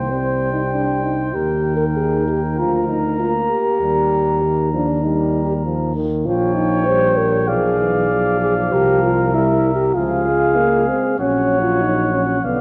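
This classical brass quintet piece is solemn and grave, played with a flexible, rubato feel across a brief 12.6-second passage cut from a longer work. A mellow, vintage-toned trumpet carries the melody high in its range, while a second, dark trumpet traces a smooth-topped line beneath it with light vibrato. The French horn fills out the middle of the accompaniment, and the trombone sits in the background with a soft attack and gentle vibrato. Up front, the tuba anchors the bass with a smooth top and a slight vibrato of its own. The harmony moves from C minor through Eb and Bb/D toward a darker turn of half-diminished and diminished chords, then C7, Db and Gb/Bb, heightening the mournful weight. The whole sounds as though heard in a concert hall, with a moderate reverb, and is coloured by worn, warbling cassette tape whose pitch drifts audibly.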